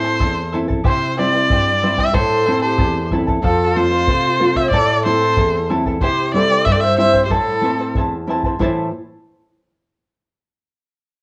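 A home cassette recording with a wet studio reverb carries this wistful, earthy Andean folk excerpt in A minor at 93 BPM in 2/4, where a clear, focused erhu sings the up-front melody with vibrato and portamento over fingerpicked shimmering charango with plate reverb, a dark, full-bodied nylon-string guitar with audible finger squeak, and a deep bombo, while an airy, end-blown large quena enters at 2.2 seconds as a tongued, expressive second line in the background.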